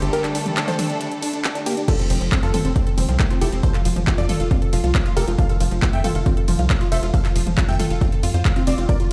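Uplifting trance at 137 BPM in F major, euphoric and uplifting, caught mid-drop from a longer piece. A punchy supersaw stab carries the melody with sidechain pumping and digital delay, joined by a very quiet concert grand piano as a second line, while a lush, distant violin section with dub echo and a smooth studio string section holding sustained chords sound only in the opening 1.8 seconds. A tight, saturated sequencer bass drives underneath with sidechain pumping, and an overdriven big-room dance kit supplies crash, ride, hi-hat, handclaps and toms, its hats, cymbals and toms all pumping with sidechain. At 1.9 seconds a punchy, tape-warm electronic kick enters up front alongside a round analog pluck playing arpeggios through chorus, delay and sidechain pumping. The mix sits in a large studio reverb, sounding as if played on a big sound system in a bare room.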